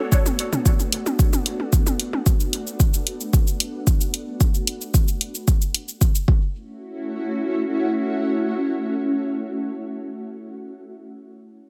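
Dub techno at 112 BPM in F# minor, hypnotic and hazy, with a granular cloud pad holding blurred, detuned, slow-blooming chords up front from Bm7 toward F#m7 at 6.3 seconds, its built-in reverb and sidechain pumping giving it a breathing pulse. An overdriven, deep electronic kick drum sits forward alongside an analog shaker and hi-hat until about 6.4 seconds, while layered electronic toms flicker briefly with dub echo and pumping. After the drums stop, the pad carries on alone to the close of this short cut from a longer piece, the overall sound otherwise dry.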